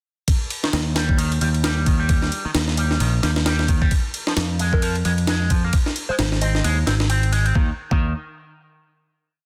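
Energetic and playful, this short breakbeat piece drives straight into a drop at 0.3 seconds and holds it until a closing chord at 7.6 seconds. A sampler-style drum kit sits up front with a looped, edited breakbeat, pairing a thumpy kick and a high-tuned snare with ride cymbal, its pitched-up, gritty, tape-tinged sound swung on the sixteenths. Beneath it, an overdriven picked electric bass plays a dark, round, dub-style line, direct and prominent in the mix. A clean, twangy electric guitar runs an envelope filter through a repeating 16-step sequence, given tube saturation and digital delay. From 4.7 to 6.6 seconds a gentle, keys-like FM synth lead adds short answering phrases from the background, its vintage, warbling tone carrying chorus, vibrato, a small-speaker colour and delay. The whole is set in digital ambience and finished with a dense, heavily limited modern master.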